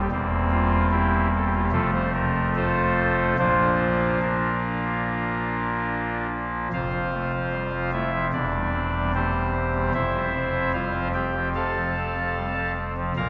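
A straight 4/4 pulse at 74 BPM carries this reverent, serene chorale-style classical passage, cut from a longer piece, in which a solo pipe organ voiced on a soft oboe reed stop spans from E1 to Bb5 with a baroque voicing and an audible chiff. The harmony settles in Bb major before moving to F major at 6.7 s. The reed sits up front yet is heard from further back in a church with a long, wet reverb, and its top end is muted and dark.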